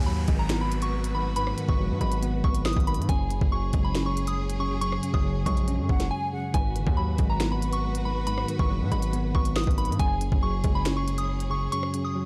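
Drill hip hop in a half-time feel, this short cut from a longer piece feels ominous and dark, moving between G#m7 and F#sus2 chords. A soft, pure FM synth bell carries the melody high up, shimmering with chorus and delay over a worn, slightly out-of-tune tine electric piano that sounds as if heard through built-in speakers. Lush bowed symphonic strings hold sustained chords with expressive vibrato, while a downlifter sweeps through the opening 3.1 seconds. The drill kit hits with a knocking kick, sharp snare, crisp hats, rim clicks and finger snaps, and a heavy, saturated 808-style bass sits up front with aggressive distortion until the kick drops out at 11.7 seconds. Around a brief break at 6.1 seconds, an airy, hollow silver flute slips in a short tongued phrase with delay, all within a dry, dark production.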